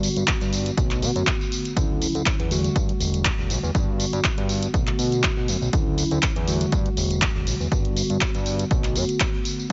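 Filtered disco house at 121 BPM with a light 16th-note swing and a joyful, feel-good mood, cut from a longer piece and cycling through Gmaj7, Bm7, Dmaj9 and Em11. A mellow, clean tine electric piano with phaser and a fat, nasal, detuned analog bass both pump against the sidechain. Up front, an overdriven analog drum machine supplies handclaps, hi-hat and tambourine, while a layered, tape-warm electronic kick enters at 0.3 seconds, all set in light reverb with a softened, filtered top end.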